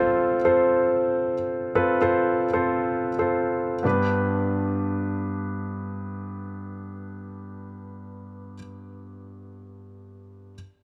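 A warm concert grand piano plays an uplifting pop accompaniment from G2 to C5 in this brief excerpt, shifting from an F chord to G at 3.8 seconds, its intimate, polished, up-front tone carrying deep bass, long sustain and audible action noise within a light reverb and small-room ambience under a dark, warm production.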